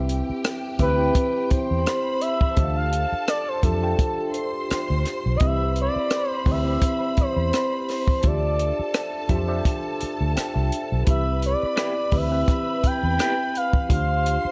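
A small, lightly reverberant room gives this lush 1970s-style soul passage, cut from a longer piece, a close and intimate sound at an unhurried 85 BPM in 4/4, with a gentle swing on the sixteenths. Smooth and warm in mood, it moves between Cmaj7 and Dm11 in C major. A dry cocktail drum kit with a punchy kick sits up front on hi-hat, kick and rim click, beside a dark, round, foam-muted fingered bass. A worn, slightly out-of-tune tine electric piano with phaser fills out the accompaniment and steps forward with a fill at 9.7 seconds, while a bowed string section adds a lush, vibrato-rich second line. From 0.8 seconds an up-front sawtooth lead carries the melody, sustained and expressive, sliding with portamento through chorus and slapback echo, and at 11.8 seconds a bright, twangy, slightly broken-up guitar riff with tremolo appears in the background.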